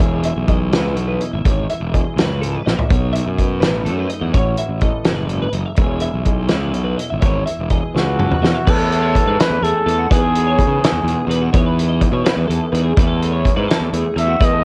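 In a straight 6/8 at 83 BPM, this playful, bright math rock and midwest emo cut in E major sets a twangy, chorused twelve-string electric guitar's arpeggios over a dark, fingered electric guitar in the background, a growly fuzz bass and a loose indie kit with a fat snare and fills at 2.7 and 7.9 seconds, all with a dry home-cassette texture, while a breathy, whispered trumpet carries the melody from 8.0 seconds over chords like B9sus4/E and C#m9/E.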